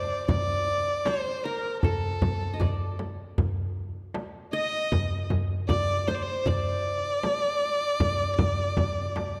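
Hypnotic and melancholic, this short cut from a longer Turkish makam ensemble piece in a straight 4/4 features a rich, focused violin played by a single player, singing the melody up front with bowed vibrato, a bright-edged, plectrum-plucked qanun with triple strings carrying a second line alongside it, and a crisp metal-shell darbuka and deep frame drum, both close and dry, entering at 0.3 seconds, all set in a dark production on a wet scoring stage.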